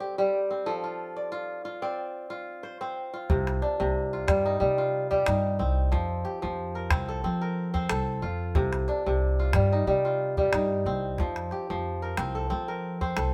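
Flowing and reflective, this excerpt of West African string and xylophone music moves at 91 BPM in C dorian with a light sixteenth-note swing. Bright, ringing kora arpeggios open alone and up front, fingerpicked crisply over shifts between C minor and F. At 3.3 seconds a woody, thumpy pizzicato upright bass on steel strings joins alongside a small, close and dry calabash, the whole band sounding live in one room with light reverb.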